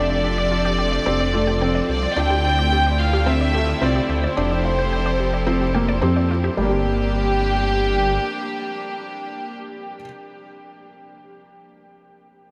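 Piano and strings electronica in G dorian at 109 BPM in a straight 4/4, this intimate, hypnotic excerpt is cut from a longer piece and opens on a drop that lasts until 6.6 seconds. A dark, close violin section carries the melody up front with light vibrato and a soft attack, while a rich, earthy chamber string section holds sustained chords beneath it. A felt-muted upright piano plays a mellow riff with audible action noise and short sustain, and a deep, rumbling detuned saw bass sits up front with a beating, tube-saturated edge. In the background, a lush, punchy unison pluck with ring modulation and a noise layer spins decaying arpeggios through cassette tape colouring before dropping out at 6.8 seconds. The harmony moves through F6, Dm7 and Fmaj7 before landing on Gm. Diffuse ambient delay trails the violins, piano and pluck, and a huge ambient reverb soaks the whole dreamy mix, with the piano ringing on alone until 10.1 seconds.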